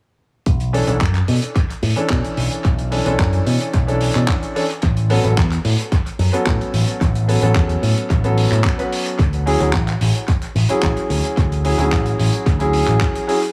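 A picked electric bass run through an envelope filter anchors this nu-disco fragment, sitting up front with a bright, direct and amped tone as it moves between A1 and B2 from 0.5 seconds. Cut from a longer piece, it rides a straight 110 BPM groove in 4/4 and carries a cosmic, sensual mood in B dorian. Underneath, a layered, produced electronic kick with a punchy edge and studio reverb joins a damped 70s kit whose handclaps and hi-hat sound dry and mid-forward, touched by studio reverb and analog delay. A clear concert grand piano enters at 0.7 seconds, polished and present with deep low notes, its accompaniment pumping against the sidechain and trailing analog delay. The harmony moves from Bm11 to A69 at 4.8 seconds and on to Dmaj9#11, all set in a small room ambience within an echo-heavy mix.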